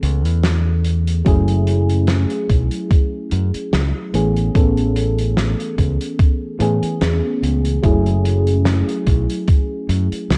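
A round, chorused FM electric piano with tape echo opens this hazy, nostalgic vaporwave excerpt over Amaj9 and F#m9 chords, alongside an up-front fingered bass with tube saturation and a loose indie kit of hi-hat and fat snare in gated reverb, before a thumpy, overdriven electronic kick enters at 1.3 seconds, all wrapped in small-room ambience and cassette-tape grain.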